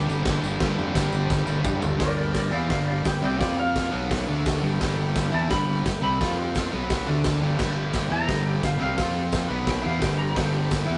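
A rough rehearsal-room recording with moderate reverb and a rolled-off top end frames this raw, swaggering garage rock, cut from a longer piece. Up front, a saturated drum kit with a boomy kick and a pumping stone-room sound plays a fill from 1.3 to 2.0 s, while a growly overdriven fingered bass and a double-tracked, compressed fuzz guitar drive the riff. Buzzy combo organ chords with light vibrato and a jingly tambourine sit in the background throughout, and from 2.0 s the dark, clean lap steel carries a slide solo.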